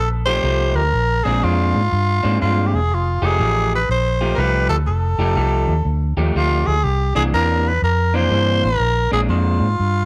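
A small room's light reverb frames this rollicking, soulful electric blues shuffle excerpt in F mixolydian at 122 BPM, where a raspy, growling tenor saxophone with scooped notes carries the melody up front over a round, punchy, foam-muted bass, while a twangy, slightly broken-up electric guitar through a small old amp plays a riff from 0.3 to 9.7 seconds across F9, Bb9 and C9 chords.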